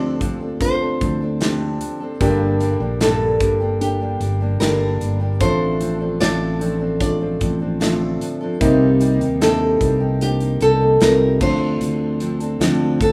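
At a straight, unhurried 75 BPM in 4/4, this melancholic pop ballad in G minor moves with a sense of longing, and the passage is cut from a longer piece. A small, bright nylon-string guitar carries the melody up front, while a dark upright piano with a woody, boxy tone and short sustain fills in the accompaniment. A full-bodied dreadnought steel-string acoustic guitar plays fingerpicked arpeggios through a digital delay, and a round, direct fingered electric bass sits prominently underneath. An acoustic drum kit with a tight kick, medium-tuned snare, hi-hat and crash cymbal comes in at 0.2 s. The harmony travels from Dm7 through Gm, F6/A and Cm7 before returning to Dm7, all within a rough home-demo mix with light small-room reverb.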